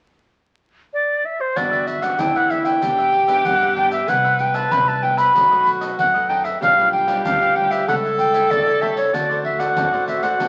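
Through the crackle of a very old 78 rpm record comes a sunny, joyful samba and choro fragment in which an airy, close-miked concert flute with vibrato sings the melody alone from 0.9 seconds before a breathy, scooping jazz-style tenor saxophone joins at 1.6 seconds with a smooth second line, while a crisp picked cavaquinho and a bright fingerpicked nylon-string guitar with finger squeak sit in the background, a dark, woody gut-string upright bass thumps pizzicato beneath them, and distant maracas, tight surdo and soft-handed pandeiro ring in a large room.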